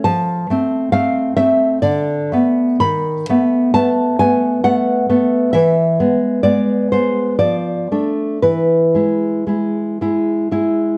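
Closely miked in a moderate recital-hall reverb, this melancholic, intimate romantic piece for solo classical guitar moves in a rubato 3/4 at about 65 BPM, its full-bodied, thumb-plucked nylon-string guitar sitting up front across a range from D3 to B5 as the harmony drifts from F through Bm7/D and B7/D# to E, then Dm/F back to E, in this 11-second passage cut from a longer piece.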